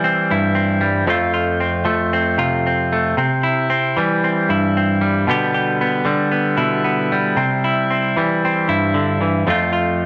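Carefree and warm, this short highlife passage, cut from a longer piece, moves at 114 BPM in a straight 4/4 feel in C major. A single semi-hollow electric guitar carries it alone from 0.0 to 10.1 seconds, its clean, picked tone bright and compressed with a hollow-body resonance, sitting up front in the mix. The part ranges from F2 up to G4 over a simple harmonic cycle of C, F, C, G/B and back to C, closing on F at 9.5 seconds. A moderate echo chamber reverb with a digital ambience wraps the guitar in a gentle halo of space. The effect is relaxed and open, a lone guitar sketching the genre's easygoing character.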